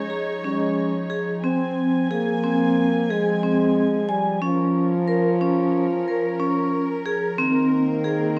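Set in an uneven 9/8 at 182 BPM in eighths with a straight feel, this pensive, hypnotic piece of contemporary chamber music in F minor moves through Dbadd9, Fm, Bbm and Abadd9 chords. Up front, a vibraphone with medium hard mallets enters at 0.1 s with metallic, ringing arpeggios and a fast motor vibrato, while a mellow, soft-attacked French horn, close-miked and in classical style, carries a second line with light vibrato. Beneath them, a chamber string section holds bowed, sustained chords with a reedy, period-style gut-string tone, all set in a moderate recital hall reverb with a dark, warm production.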